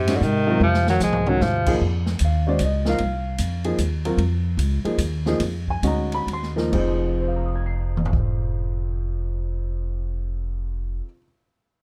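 Modal jazz in a swung 3/4, intense and searching, cut from a longer piece and set in a warm production with light reverb. A forceful, punchy tenor saxophone with vibrato and plate reverb carries the melody over a mellow, subtoned bass clarinet in the background, both stopping at 1.7 seconds, while a woody, thumpy upright bass and an intimate grand piano with audible action noise carry on from an Fm7. An open acoustic drum kit with dark cymbals and a boomy kick plays an early fill, and the music slows down between 4.2 and 6.7 seconds.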